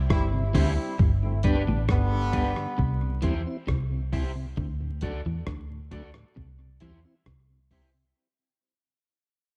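A slow, straight 4/4 pulse at 67 BPM anchors this sunny, uplifting roots reggae excerpt, carried up front by a gritty sampler-style drum kit with a thumpy kick, hi-hat and rim click, alongside a round, punchy foam-muted electric bass. A clear, tight horn section with tape echo plays a second line until 3.2 seconds, while a very quiet clean guitar picks a riff, a twangy, slightly broken-up guitar with analog chorus and tape echo adds accompaniment, and a mellow tonewheel organ with key click and slow rotary speaker sits in the background. The band hits an accent over the first second before the music fades out across C, G and D chords, wrapped in a dark production with light reverb and vinyl crackle.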